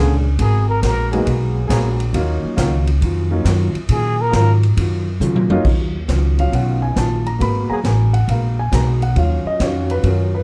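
A dark production with light reverb frames this dramatic, swinging big band jazz excerpt in Eb minor at 137 BPM, where a clear, plunger-muted trumpet with a wah-wah tone and light vibrato states brief melody phrases at 0.4 and 3.9 seconds over the trombone section's tight, soft-attack sustained chords and a woody pizzicato upright bass sitting up front. A swinging acoustic drum kit with a punchy kick and medium-tuned snare enters at 0.4 seconds and plays a fill at 5.2 seconds, while a clean, picked hollow-body electric guitar adds dark accompaniment. From 5.6 seconds an intimate grand piano, its action noise audible, takes a solo over the Abm9 and Ebm9 chords.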